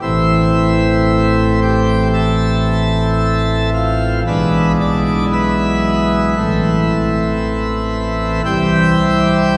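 A solo pipe organ on a full, brilliant plenum with mixtures and baroque voicing sits up front and sounds from the first moment in this serene, majestic classical chorale-style fragment in A minor, moving with a rubato feel at around 57 BPM through Am, E7/B, Am and C, its chords spanning A1 to A5 and ringing into a long, wet cathedral reverb of a church or concert hall before the passage is cut off at 9.6 seconds.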